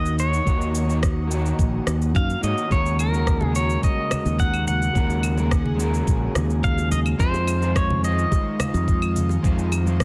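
A dense, heavily limited modern mix with light digital ambience carries this relaxed, wistful sunset chillout cut at 107 BPM in a straight 4/4, where a bright, twangy pedal steel guitar sings the melody with fingerpicked slide and volume swells, bathed in tape echo and shimmer reverb alongside a dark, slightly broken-up fingered electric guitar. An airy, breathy pad with chorus and phaser sits in the background, while a growly, up-front fingered electric bass anchors the harmony as it moves from Ab9sus4 to Fm7 at 7.2 seconds. Tape-warm electronic shaker, rim click and claves, with softly clipped snare, start almost at once, a knocking electronic kick joins at 0.5 seconds, and very quiet, close and dry bongos and congas arrive at 2.9 seconds.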